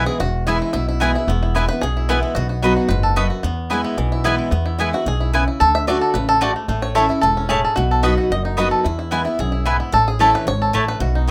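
A bright, twangy five-string banjo, played with fingerpicks, carries the melody and takes a solo across the whole 11.3-second cut, its percussive attack sitting up front. This is joyful, lively bluegrass in E major at a brisk 222 BPM in a straight 4/4. The picked mandolin adds woody stabs with the ring of its double strings, also placed up front, while a picked steel-string acoustic guitar fills in warm accompaniment. Underneath, a growly, dark upright bass played pizzicato on steel strings anchors the low end. The harmony moves through E, B, D and A over two passes of the same section, and the whole thing has the light reverb and rough feel of a home demo mix, cut from a longer piece.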